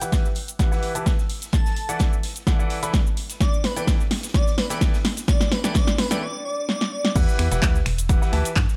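Soulful and energetic, this piano house excerpt in E minor at 128 BPM builds as a brilliant grand piano riff with audible action noise moves through a filter sweep and dub echo, an airy, detuned sine lead with vibrato and portamento floats in, an overdriven analog drum machine, a punchy up-front electronic kick and a very quiet soft-mallet kit drive the groove with fills, and after a break at 6.2 seconds the drop lands at 7.2 seconds, bringing in a hollow, dark organ-like FM bass with sidechain pumping.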